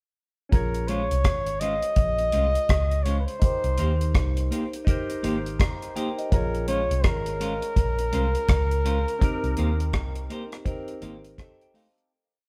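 Bittersweet and smooth, this short lovers rock reggae piece in Bb dorian moves at 83 BPM with a swung sixteenth feel, as a warm, lightly vibrato flugelhorn sings a motif-based melody up front over a dry, dark rockers groove of kick on every beat under a backbeat accent, with rim click and hi-hat. A round, foam-muted fingered bass carries a melodic line with slides, a clean picked electric guitar chops the off-beats, and a barky tine electric piano holds rootless chords through phaser and dub echo. The band plays live in one room with light reverb, moving through Bbm9, Cm7 and Abmaj9 before fading out from 9.2 seconds, where the electric piano adds a closing fill at 11.0 seconds.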